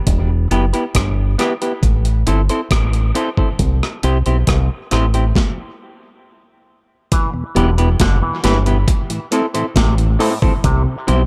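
A deep, round fingered electric bass sits up front in this heavy, hypnotic dub reggae excerpt in E minor, moving slowly at 68 BPM in a straight 4/4 over Em, Am and C. Beside it, a gritty, compressed breakbeat-style drum kit with a thumpy kick, medium-tuned snare, rim click and hi-hat is overdriven and sounds re-recorded in a small room. A dark, clean semi-hollow electric guitar enters at 0.5 seconds as accompaniment, softened by a low-pass filter and a subtle chorus and trailed by dub echo. The band drops into a stop at 5.4 seconds, then returns at 7.1 seconds as a nasal, stringy auto-wah clav adds overdriven arpeggios with dub echo, and moments later a mellow tonewheel organ with key click and a slow rotary speaker fills in from the background. A light reverb surrounds the mix, and the passage is cut from a longer piece.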